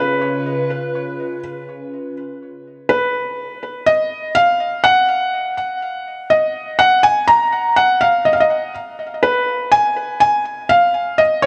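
A felt-muted upright piano carries the melody across the whole 11.5 seconds, its soft, intimate tone marked by audible action noise and a touch of delay, in an intricate, glitchy IDM excerpt with a gentle swing. Beneath it, a warbly, nostalgic tape-like pad holds a C#7 chord through chorus and phaser for the first 1.9 seconds before dropping away, leaving the piano alone in a moderate plate reverb.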